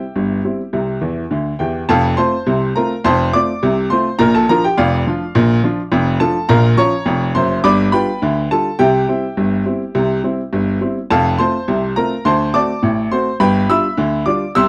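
Ragtime piano in a playful, jaunty mood, this short cut from a longer piece moves in a straight 2/4 feel. A solo upright piano carries everything, sitting up front with a clear, woody tone that feels smooth and vintage, its notes fading with a short sustain across a span from F1 to E6. The piano plays a fill from 1.0 to 1.9 seconds, leading into a new section at 1.9 seconds. From there the harmony travels from F through Bb and a darker Bbm, then G7 and C, before returning to F and turning through D7 and G7. The sound is a dry, close 1970s-style studio recording with a moderate touch of small-room reverb.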